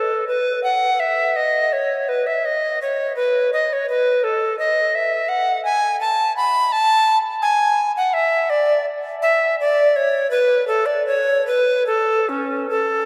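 A bright, airy tenor recorder plays alone and up front, its crisp chiff and vibrato giving a woody edge to this serene, dance-like baroque-style fantasia in 3/4. The rubato tempo drifts between 71 and 87 BPM, and the line settles into A major from 5.3 s, ranging from C#4 to B5. A vast cathedral reverb lets each note hang and echo for seconds in this short fragment of a longer piece.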